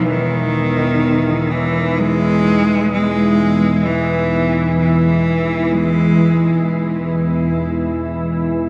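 Dark ambient drone, dark and desolate in mood, set in a vast, echoing cathedral-like space. An up-front, organ-like drone with detuned ensemble chorus anchors the low end, while a very quiet, moody analog pad holds sustained chords and a pure, ringing quartz singing bowl plays meditative arpeggios in the background through shimmer reverb and diffuse delay. A clear, focused solo cello carries the bowed melody with vibrato, bathed in the same shimmer and delay, before falling away at 6.7 seconds in this short cut from a longer piece.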